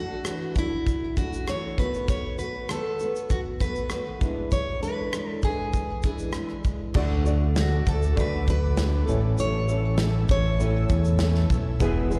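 Heard as a live gig through the venue's PA, this sunny, heartfelt acoustic pop piece carries a small-room ambience and the bloom of a recital hall, moving at 99 BPM in a straight 4/4 in A major. A full-bodied, jumbo steel-string acoustic guitar carries the picked melody with slapback echo and digital delay, while a bright, fingerpicked classical nylon-string guitar, double-tracked and echoed, supplies the accompaniment from the start. A modern studio drum kit with a tight kick, medium-tuned snare, rim click, shaker and crash cymbal sits up front in an acoustic room sound. At 6.9 seconds a concert grand piano with deep bass and short sustain enters in the background alongside a fat, thick analog bass whose sawtooth and square-wave tone evolves under a filter sweep and moving notch, and at 7.5 seconds an ethereal, airy pad of detuned unison voices and a noise layer adds slow-attack chords bathed in ensemble chorus and reverb. 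The harmony shifts from Dadd9 through B7/D# and E7 before settling on D and A, with the guitar melody falling away at 11.5 seconds as this fragment of a longer piece closes.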